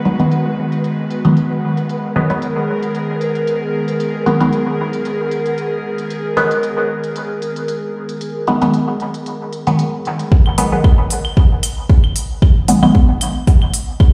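Dub techno at 114 BPM in G# minor with a nocturnal, cavernous mood, where a muted, detuned chord stab with phaser, dub echo and cassette-tape grit sits up front over a breathy, warbling pad on a G#m7 chord, a resonant bubbling texture in the background and smooth filtered hi-hats, until the pad and texture drop out at 10.3 s as a deep kick drum enters, followed by analog claves and congas with dub echo at 10.5 s, all heard through a big sound system in a bare stone room.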